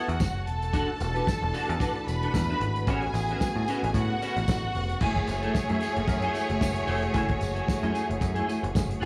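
Lush, vibrato-rich strings with tape and slapback echo open this driving, glamorous disco excerpt alongside a bright, twangy clean electric guitar shimmering with ensemble chorus, joined at once by a direct, up-front picked bass, a muffled, dry soul drum kit with dark cymbals and a tight kick, and a jingly vintage tambourine, before a mellow French horn section enters at 0.7 seconds with sustained chords through E9sus4, A69 and F#m9, all heard as a live gig through the venue's PA with club reverb and vinyl crackle.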